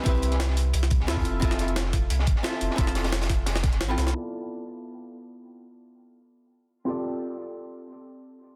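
A dark, clean hollow-body archtop guitar sits up front through this lush, dreamy liquid drum and bass excerpt at 176 BPM in D dorian, its picked chords filtered and treated with digital delay as they move from Cmaj7 and Fmaj7 to Dm69 and G9sus4. In the opening drop, a deep, round sine sub bass joins a knocking, layered electronic kick and two stacked breakbeat kits: one gritty, pitched-up and sampler-style, the other saturated with a high-tuned snare and a rolled-off top. The kick drops out at 3.8 seconds and a drum fill lands before the rhythm section stops at 4.1 seconds, leaving the guitar alone under a filter sweep in a small, lightly reverberant room with a dense, heavily limited master.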